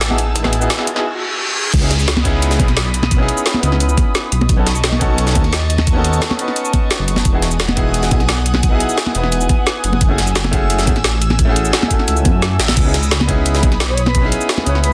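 Rolling and melancholic, this liquid drum and bass passage moves at 174 BPM in C# minor, cut from a longer piece and drifting through a chord cycle of F#m9, C#m9, B9 and Emaj7. A short build-up with a riser and reverse cymbal sets up the drop at 1.7 seconds, after which a dark, detuned saw bass sits up front, deep and rumbling with tube saturation giving it a beating, saturated edge. The drums stack an overdriven, knocking electronic kick with a garage kit of woody snare, metallic hats, cabasa and crash, plus a pitched-up, sampler-style jungle kit with a high-tuned snare and a gritty, tape-warm character, while close, dry congas sit in the background. Above this, a clear grand piano plays accompaniment with delay, and an airy, breathy pad holds sustained chords, shimmering through chorus and phaser and pumping against the sidechain. In the final second, from 13.9 seconds, a bright, reedy concert flute slips in with vibrato and delay. 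The sound is dense and heavily limited, with light reverb lending a digital ambience.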